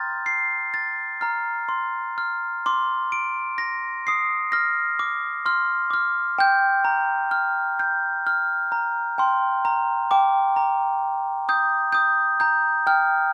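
Tender and innocent, this slow children's lullaby at 64 BPM in B-flat major features a solo glockenspiel struck with rubber mallets, its mellow, bell-like tone sitting up front in light reverb as the chords move from F to Bbadd9, Gm7 and Eb/G across this short 13.3-second fragment of a longer piece.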